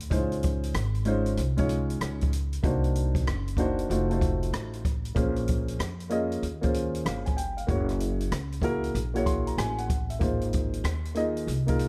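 Nocturnal and mellow, this swung jazz-hop excerpt pairs a woody, thumpy pizzicato upright bass and an up-front acoustic jazz kit of hi-hat, rim click and boomy kick with a dark, smooth vintage grand piano whose short-sustained chords move from Dbmaj7 through Cm7b5, F7b9, Bbm9 and Gb9 to Ab69, all three parts sharing a studio reverb.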